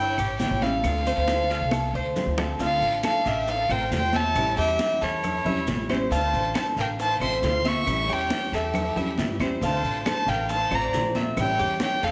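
Cuban son and guajira at 137 BPM in D minor, this nostalgic, sultry excerpt from a longer piece moves between A7 and Dm7 over a straight 4/4. A close, reedy solo violin carries the melody up front with light vibrato, an airy bow and a gut-string, period-style tone, while a lush, distant violin section adds a second line in the background. The Cuban tres picks metallic arpeggios on its double strings, the pizzicato upright bass sounds dark, growly and thumpy, and a fingerpicked nylon-string guitar, full-bodied with audible finger squeak, enters at 0.4 seconds to fill in the accompaniment. Percussion sits in the background from 0.2 seconds: ringing, high-tuned congas played with hard hands, round, low-tuned bongos heard from a distance, grainy maracas and very quiet, saturated claves, joined at 0.4 seconds by a raspy, band-limited guiro. A drum fill between 1.7 and 2.6 seconds leads into the second section, and a large studio reverb gives the whole ensemble a spacious, wet sheen.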